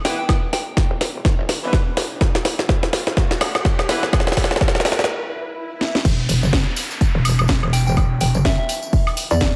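Gritty and bouncy, this bass house excerpt at 125 BPM in E minor swings its 16ths while a metallic, saturated wobble bass with overdrive and sidechain pumping drives beneath a punchy electronic kick and a house kit with a cracking snare, crash, hi-hat and woodblock, both up front. A soft, pure synth bell with chorus and phaser floats over jazz-style horn stabs that sit in the background until 4.0 s, and background risers, swells and downlifters build through a drum fill and a short break before the drop at 6.0 s. At the drop, a very quiet brushed jazz kit and a jingly, close tambourine join, within a dreamy mix soaked in plate reverb.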